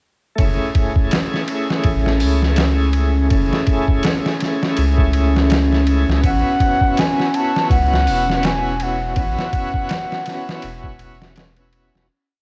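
A gritty, pitched-down drum loop with a thumpy kick and a medium-tuned snare opens this short, hypnotic trip hop piece at 82 BPM, arriving at 0.4 seconds together with a round, deep analog bass and a bright tonewheel organ. The drums sit up front as a compressed, sampler-style breakbeat with edits and a light swing, while the dark, fast-attack bass carries a dub-style line with tube saturation. The lightly overdriven organ, turning through a slow rotary speaker with tremolo and tape echo, holds rootless chords with syncopated pushes, moving from F#m7 to A6, and a warbling, nostalgic pad with chorus sustains a single high note in the background from 0.7 seconds. At 6.3 seconds a baroque flute enters with a pure, woody tone and expressive vibrato, playing short call-like motifs through tape echo as the piece fades out toward its close at 12.1 seconds. The whole has a cinematic, lo-fi character, captured on cassette in a lightly reverberant home setting with the highs rolled off.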